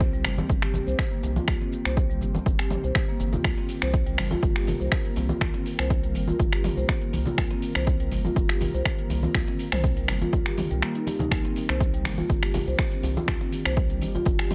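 A punchy, overdriven electronic kick drives this driving, hypnotic afro house passage at 122 BPM in 4/4 with a straight feel, sitting in C minor over a single Cm7 chord throughout. Beside it, an up-front deep house kit, also overdriven, adds finger snaps, shaker, toms and metallic hi-hats, while warm acoustic congas sit in the background with a small-room character. A round analog bass, deep, nasal and dark, holds the low end between G1 and C2 and pumps to the sidechain. A mellow, woody marimba with soft mallets plays arpeggios between G3 and C5, set mid-forward with digital delay and sidechain pumping. Behind it, an ethereal, airy pad of detuned sawtooth and triangle layers holds slow-attack chords from Eb3 to Bb4, softened by ensemble chorus, its own reverb and the same pumping. The whole 14.5-second passage is cut from a longer piece and keeps a dry overall sound.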